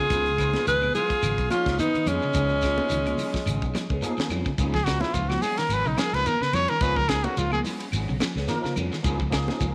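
A tight funk drum kit sets a swung sixteenth-note groove in four, its punchy kick and high-tuned snare sitting forward in a small room, while ringing, soft-handed congas, a grainy, compressed shekere and very quiet woody claves fill in the background of this funky, joyful afrobeat excerpt cut from a longer piece. A round, amped fingered bass anchors the low end beneath a single Db7 chord. In the background, a slightly broken-up picked guitar spins arpeggios through lush chorus, a darker guitar from a small old amp adds phaser-tinged stabs, and a barky tine electric piano comps cleanly with ensemble chorus. Up front, a bright alto saxophone with light vibrato carries the melody over an edgy tenor saxophone second line until both stop at 4.0 seconds. A drum fill at 4.3 seconds opens the trumpet solo, and from 4.7 seconds the clear trumpet takes over with vibrato and scooped notes, all under a light reverb.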